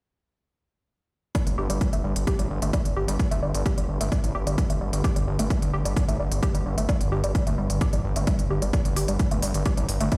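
Driving peak-time techno at 130 BPM, industrial and relentless, where an overdriven, heavy kick sits up front with smooth, overdriven electronic hi-hats from 1.3 seconds, a gritty, nasal driven synth bass pumps beneath, a woody, warbling wave-folded pluck carries the riff with analog chorus and delay, and from 2.5 seconds a swarming, detuned drone hovers in the background with its own reverb, all heard on a big sound system in a bare stone room in this cut from a longer piece.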